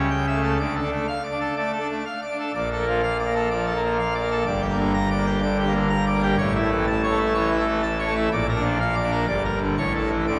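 A pipe organ on full registration, with bright mixtures and a crisp chiff at the front of each note, dominates this majestic, stormy passage from a classical organ toccata. It plays alone and up front throughout the 10.4 seconds, spanning from a deep G1 in the bass to Bb5 at the top, its baroque voicing giving the sound a brilliant, stately edge. The tempo sits at 124 BPM in a straight 4/4. The harmony opens on A7/C# and moves through Dm, Bbmaj7 and Gm before reaching A at 6.4 seconds, then passes through Bb and Gm and arrives back on A at 9.8 seconds. A wet church reverb with a long 3.4-second decay surrounds the instrument, lending the fragment a vast, resonant space.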